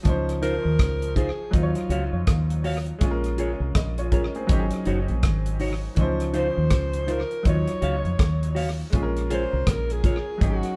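A swung, unhurried lovers rock reggae groove from a dry 70s drum kit with hi-hat, tight kick and rim click sits up front beside a round, punchy, foam-muted dub bass, while clean hollow-body guitar stabs and a brilliant, worn grand piano touched with tape echo fill in the chords, and a breathy, intimate alto saxophone with a soft attack and vibrato carries a smooth, longing melody in this short excerpt from a longer piece.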